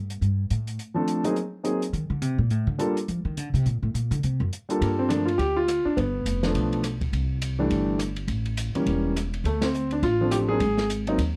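A woody, thumpy pizzicato upright bass sits up front and takes a solo over the opening 4.8 seconds of this smoky, cool jazz piano trio excerpt in G minor, swinging at 208 BPM in 4/4. A concert grand piano with deep bass, long sustain and a slapback echo carries the melody from 0.9 seconds, while a softer, dark-toned acoustic kit of hi-hat, punchy kick, smooth ride, rim click and medium-tuned snare keeps time. The band hits an accent at 9.6 seconds amid chords like Dm7, G9 and A7b9, all captured in a dry, close 1970s-style studio with small room ambience.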